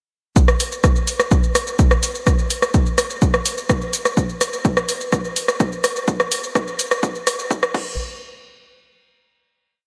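This short techno piece runs at 126 BPM in a straight 4/4, with a melancholic, hypnotic mood. An electronic kick drum drives a four-on-the-floor pulse, its analog punch carrying a tape-warm tone and the character of a small room, placed up front in the mix. Alongside it, a programmed analog drum machine supplies hi-hat, rim click, shaker and crash cymbal in a backbeat pattern, sharing that same close, up-front placement. Both drum parts play from 0.4 to 7.8 seconds as the whole track rises through a build-up shaped by a filter sweep, before a final hit arrives at 8.0 seconds. A lush hall reverb and a high-pass filter leave the mix dreamy and soaked in ambience.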